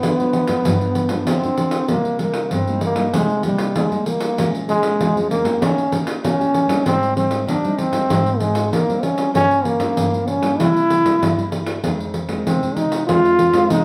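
Bittersweet and yearning, this samba-choro passage, cut from a longer piece, features a warm trombone up front as the jazz-style solo voice, shaping its melody with vibrato and scooped notes over chords that drift from G7 through Cm7, Bbm7 and Abmaj7 toward Fm7. A nylon-string guitar, thumb-plucked on fresh strings in a classical manner, carries the accompaniment, while a jingly, vintage-sounding pandeiro played with soft hands sits close alongside. The trio plays live together in one room, bathed in a generous large-studio reverb.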